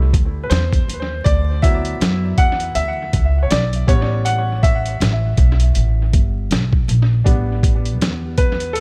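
A bright, brilliant upright piano with audible action noise and short sustain carries this cool, relaxed jazz-hop cut from a longer piece, moving through Fmaj7, D6 and A9 before settling on A7sus4 at 7.3 seconds, over a woody pizzicato upright bass and a gritty, pitched-down boom bap drum kit with a thumpy kick that enters at 0.1 seconds, all swung in a small room with echo, analog delay on the piano and drums, and vinyl crackle.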